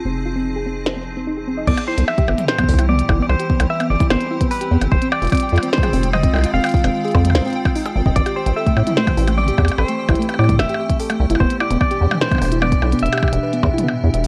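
A filter sweep on soft, round arpeggiated plucks opens this playful, wistful IDM excerpt at 148 BPM, set over icy, crystalline pad chords, a rubbery, saturated acid bass up front and a faint pulsing gated texture; a glitchy kit of clicky hats and tiny snare arrives at 0.9 seconds, and a twangy clean electric guitar melody and deep electronic kick join at 1.7 seconds as the chords move from Cmaj7 through Fm7, Am7 and Em7, before the kick drops out at 13.8 seconds, the mix wrapped in light digital ambience and the pitch drift of worn cassette tape.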